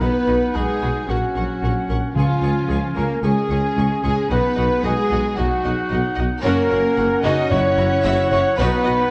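Triumphant and adventurous, this cinematic orchestral excerpt sets a lush, vibrato-rich violin section on the melody while a second violin section, an airy flute, a clear clarinet and a mellow cor anglais weave supporting lines alongside a focused viola accompaniment. Soft-attack French horns hold sustained chords as the most prominent voice, grounded by cellos, a close-miked tuba and a distant double bass section, with round, soft-mallet timpani strokes arriving at 2.2 and 7.5 seconds. The whole recording sits in a moderate scoring-stage reverb and carries the worn, warbling pitch drift of old cassette tape.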